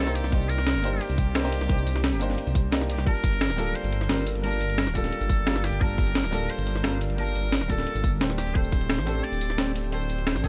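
Liquid drum and bass at 175 BPM in G minor, lush and soulful, with a buzzy, metal-muted trumpet singing a jazz-style solo melody with vibrato over clear, intimate grand piano accompaniment, both carrying delay, as the harmony moves from Cm9 to Gm9 and then D7sus4 at 8.4 seconds. Underneath, a deep, rumbling detuned saw bass sits saturated and up front, while a gritty, compressed breakbeat kit with a high-tuned snare, hi-hat and tambourine drives alongside a tight, layered electronic kick. The kick briefly drops out from 2.7 to 3.1 seconds around a band accent at 2.7 seconds, and the mix stays dry in this short cut from a longer piece.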